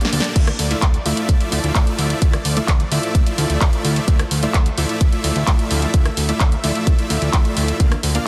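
A dense, heavily limited modern mix with light reverb opens this euphoric, anthemic slice of festival progressive house at 129 BPM in D minor, where a short drum fill and band accent give way at 0.4 seconds to the drop on a Dmadd9 chord. Up front, a punchy layered electronic kick drives the groove, joined by a house kit of punchy snare, bright hats, handclaps, rim clicks and crash cymbal in a small room ambience, while a fat, saturated analog bass holds D2 with sidechain pumping. A huge, thick detuned supersaw riff with vibrato and dub echo carries the hook over a lush pad of slow-attack sustained chords set in the background, both pumping against the kick.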